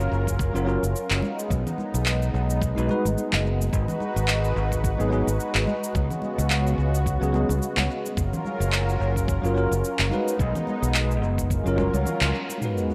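A 16th-note swing at 108 BPM carries this relaxed, wistful sunset chillout excerpt, where a gritty, thumpy sampled kick, tape-warm electronic cabasa and handclaps, and soft-handed, damped congas with tape echo sit beneath an up-front, nasal, detuned sawtooth pad with chorus and a bright, fingered electric bass, while a bell-like tine electric piano with analog delay drifts over F#maj7, B6 and G#m7 chords in an echo-heavy plate-reverb mix, until a band accent at 12.2 s and a sub drop at 12.6 s close the passage.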